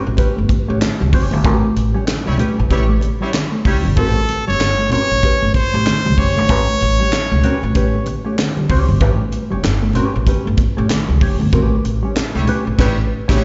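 Strutting and energetic, this funk cut opens on a dark, clean hollow-body jazz guitar through wah and slapback echo, joined almost at once by a woody, thumpy upright bass and a tight kit with a high-tuned snare, crash, hi-hat and handclaps, while low-tuned congas and a mellow electric guitar riff sit in the background. A distant, roomy horn section with light vibrato adds a second line at 2.3 seconds and again near the close, and a punchy, close-miked trumpet takes the melody up front from 4.0 to 8.1 seconds, with band accents landing early and late. It sounds like a live gig heard through the venue's PA, with recital-hall reverb and a dulled top end.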